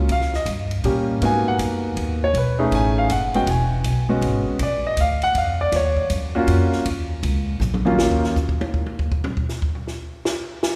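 A grand piano with a natural, up-front tone takes a solo from the start over woody, thumpy pizzicato upright bass in a smoky, late-night jazz piano trio swinging in 3/4 at 159 BPM in Eb minor, with chords such as Abm9, B13 and Ebm9 passing by. A compact cocktail drum kit with dark cymbals, a high-tuned snare and a punchy kick plays a fill at 7.6 seconds, then takes over with a solo at 8.0 seconds. The trio sits in a church-like space with a long, wet reverb, and this excerpt is cut from a longer piece.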